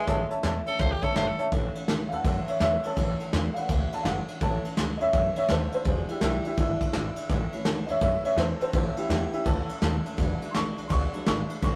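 Rockabilly with an upbeat, rollicking swing, this excerpt from a longer piece opens with a raspy, gritty tenor saxophone carrying the melody with vibrato, but it plays only until 1.5 seconds. From there the dark upright piano takes the solo, its worn, slightly detuned and boxy tone giving short, mellow notes a woody character. Underneath, a pizzicato upright bass adds a thumpy pulse, while a soft brush drum kit sits up front with a punchy kick, a medium-tuned snare, hi-hat and ride cymbal. A bright, full-bodied picked acoustic guitar fills in quietly in the background as the harmony moves between A and E7. The rough rehearsal-room sound carries a touch of tube saturation and a moderate studio reverb.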